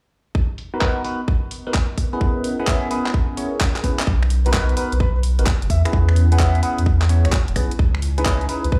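A round, deep dub sub bass arrives up front at 4.1 seconds in this moody, bouncy two-step UK garage fragment. It sits under a swung groove from a tight, overdriven electronic kick and a layered garage kit of finger snaps, handclaps and low-pass filtered hi-hats, which rolls into a short drum fill just before the bass enters. Bell-like tine electric piano stabs, treated with phaser, filtering and tape echo, move through Bmaj7, E6 and C#m9 over a very quiet, ethereal airy pad that fades in through the opening section, and at 4.5 seconds a veiled, bucket-muted trumpet adds a jazz-style solo melody with vibrato and tape echo, set back in the mix within a large studio reverb.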